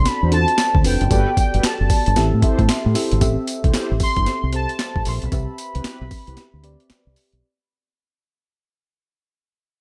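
A round, dark fingered electric bass sits up front in this bouncy, punchy new jack swing R&B clip, alongside a gritty, overdriven sampler-style drum kit with thumpy kick, high-tuned snare, handclaps, hi-hat and tambourine, a velvety sawtooth synth lead melody with chorus, vibrato and digital delay, a soft FM electric piano that adds a fill at 2.4 seconds, and brassy, detuned synth stabs in the background, set in a digital ambience as the music fades out from 3.2 seconds.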